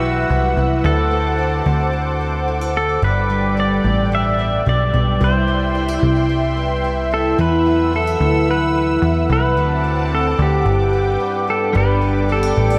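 A bright, up-front pedal steel guitar carries the melody with fingerpicked slide lines, volume swells and delay in this ethereal, blissful dream pop excerpt in G major at 110 BPM, drifting over chords that move from Esus2 and D7 through Cmaj7 to Gmaj7. Beneath it, a punchy, detuned analog bass plucks with a fast attack, a woody, octave-doubled twelve-string acoustic guitar shimmers through dark arpeggios, and a thick, nasal unison pad sustains lush chords with chorus. At 11.7 s a clean, direct-recorded electric guitar slips in at the back with tremolo, and the whole mix is soaked in a huge, wet ambient reverb.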